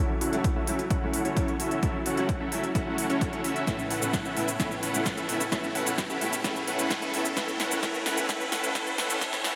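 Soaked in lush hall reverb, this dreamy, euphoric festival progressive house build-up puts a thick, detuned supersaw riff up front, its filter sweeping under sidechain pumping, over a boxy grand piano with chorus and delay, while a punchy overdriven electronic kick and a crisp big-room kit of hi-hat, shaker and snare drive the groove alongside a background riser that enters at 2.0 s and a drum fill from 3.7 s.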